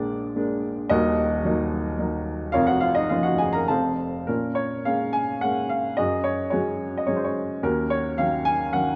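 Classical solo piano in Bb minor, moody and bittersweet, where a warm, up-front baby grand sings a lyrical line at 109 BPM in a rubato 3/4, moving from Bb7 through Ebm to F before shifting at 4.3 s to Bbm7, Gbsus2 and Ebm7, all bathed in moderate recital hall reverb and colored by the warbling pitch drift of worn old cassette tape in this brief fragment cut from a longer piece.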